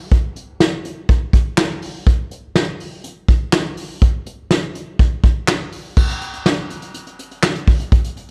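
Pop with an upbeat, bright mood, carried entirely by a vintage brush drum kit in a straight 4/4 feel: kick, snare, hi-hat, handclaps and a crash cymbal, played with brushes. The kit sounds acoustic and dark, with a punchy kick, a medium-tuned snare and a rolled-off top, sitting up front in a small room with light reverb and a faint mains hum underneath. Cut from a longer piece, the passage shifts into a new section at 6.0 seconds before the drums stop at 8.3 seconds.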